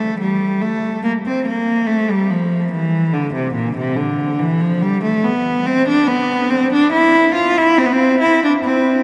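A single rich, close bowed cello carries this flowing, dance-like baroque-style suite movement on its own, its smooth, even tone shaded with vibrato as it ranges from Bb2 up to F4. The 3/4 pulse sits around 71 BPM with a loose, rubato feel, settling into C major from 5.2 s. The up-front cello rings out into a vast, echoing cathedral space whose long reverb trails linger, with nothing above about 10.9 kHz, in this short passage lifted from a longer piece.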